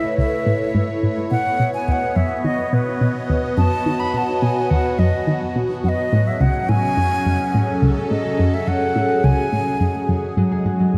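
A steady, straight 4/4 pulse at 106 BPM drives this expansive, luminous piece of ambient, sequencer-driven space music, cut from a longer work. Underneath, an analog pluck plays a low riff from C#2 to D#3, its round, nasal sawtooth and square-wave tone carrying a fast attack, short decay, chorus, cassette tape and analog delay, while a filter sweep runs across the synth arpeggio sound for the full 11 seconds. A phased analog pad holds sustained chords above it, swirling and full-bodied with a soft attack, phaser and chorus. Over this, a close-miked wooden flute carries the airy, tongued melody with vibrato and analog delay until 10.1 seconds. The harmony moves from A to B, then F#madd9, and lands on G#7(no3) at 10.4 seconds, just as a thumb-plucked concert harp enters with ringing acoustic arpeggios. The whole mix sits in a huge, wet ambient reverb with a 6.9-second tail, giving the close parts a vast, floating space.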